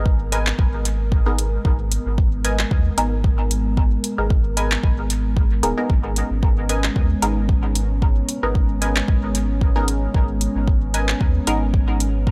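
A dry, gritty hardware sound with digital ambience frames this cavernous, nocturnal slice of dub techno in G# minor, running at 113 BPM in 4/4 with a 55% swing on the sixteenths and resting on a single G#madd9 chord throughout its 12.3 seconds. An up-front, tape-warm deep kick and a round sine sub bass anchor the groove, while a deep house kit adds handclaps and metallic hi-hats from 0.3 seconds. Above them, a moody, wave-folded pad with ring modulation, slow attack and long release holds sustained chords through chorus and reverb, and two muted, detuned sawtooth chord-stab parts with filter plucks, one playing stabs and one a higher riff, pump against the kick and trail off in dub echo, with the stabs also passing through a phaser.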